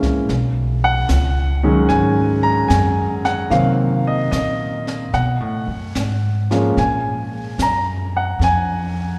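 Piano, upright bass and brushed drums all begin together in this slow, smoky jazz ballad, a short cut from a longer piece that moves at 74 BPM in 4/4 with a gentle swing on the eighth notes. The clear concert grand piano carries the accompaniment up front, spanning from D#3 to Bb5 with a natural tone and deep bass. Beside it, the plucked upright bass sounds woody and close, its steel strings giving it a warm presence in the low register. More quietly, the brush kit adds a dark, smooth bed of brushed snare, hi-hat, a high-tuned snare and a boomy kick. The harmony drifts wistfully from B6 to Cm7b5 at 3.5 seconds, then through B5 to Bb5 at 6.8 seconds. A long, wet church reverb of 3.1 seconds surrounds the recording, lending it the airy spaciousness of a concert hall.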